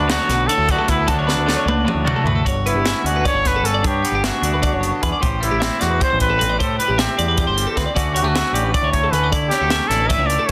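A breathy, whispered trumpet carries the melody up front over a twangy guitar bathed in plate reverb, a bright twelve-string electric guitar picking phaser-tinged arpeggios, and a growling bass with overdrive, opening this intricate, wistful math rock and midwest emo excerpt in 7/8 at 305 BPM in D major. A crisp, airy fusion kit with a high-tuned snare and tight kick sits up front, while a double-tracked overdriven guitar riff sounds in the background only until 2.3 s, overlapping a drum fill from 1.3 to 2.5 s. The harmony moves from D6 through Gmaj7#11 and Am9 to Dmaj9 under a dense, heavily limited modern master.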